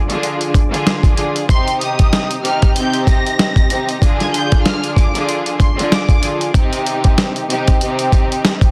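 A gritty, compressed sampler-style drum kit with a thumpy kick and medium-tuned snare sits up front in this tough, moody boom-bap hip-hop excerpt at 95 BPM in C minor, alongside a clear, smooth symphonic string section colored by cassette tape, a very quiet tonewheel organ holding sustained chords with key click, and a lush, expressive violin section carrying a high melody with digital delay from 1.5 to 6.2 seconds over shifting Ddim and Cm chords, all set in small room ambience under a dense, heavily limited master.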